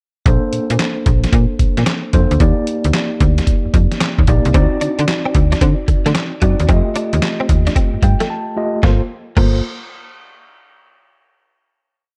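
Bouncy and slick, this short new jack swing R&B piece in G minor moves at 112 BPM with a hard 16th-note swing. A gritty, pitched-down sampler-style drum kit sits up front with a thumpy kick, a compressed snare layered with handclaps, hi-hat and crash, while a snappy FM bass with a metallic attack plays a bouncy synth-funk line full of muted ghost notes. A mellow tine electric piano pushes drop-2 chords through Bbmaj9, Ebmaj7, D7b9 and F9, adding grace notes and a short fill near the end. At 4.5 s a direct-recorded clean electric guitar joins with a picked, muted single-note riff coloured by ensemble chorus. After a brief break, the verse resolves at 8.8 s onto a sustained Gm11 chord, all set in dark, warm digital ambience.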